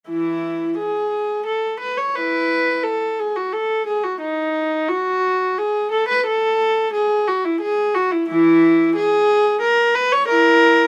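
A lone bowed viola, dark and reedy with a nasal, gut-string tone in period style, plays up front through this brief classical excerpt, a baroque-style suite movement in three. The phrasing is flowing and dance-like, with a supple rubato that lets the line breathe across a range from low to high. Light reverb gives the single player a touch of space, and the passage runs from 0.1 to 10.9 seconds before it is cut off.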